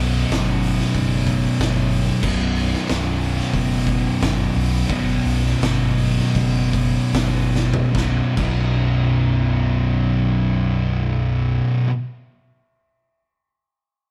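Heavy and brooding, this stoner and doom metal passage is cut from a longer piece and moves in a straight 4/4 feel. Two fuzz guitars play the riff together from the start to 11.9 seconds, one compressed with a warm tone and the other dark and thick, sitting up front in the mix. A fingered electric bass with a round, amped overdrive sound holds down the low end beneath them until 11.6 seconds. An oversized, low-tuned acoustic drum kit with a punchy kick, fat snare, dark cymbals and toms plays from 0.3 seconds, and as the music slows down from 2.2 to 8.0 seconds, the kit closes with a fill before dropping out at 8.6 seconds. The band sounds as if playing live in one wet stone room, its reverb giving the drums a bright, pumping ambience, as the first section gives way to a second at 8.0 seconds.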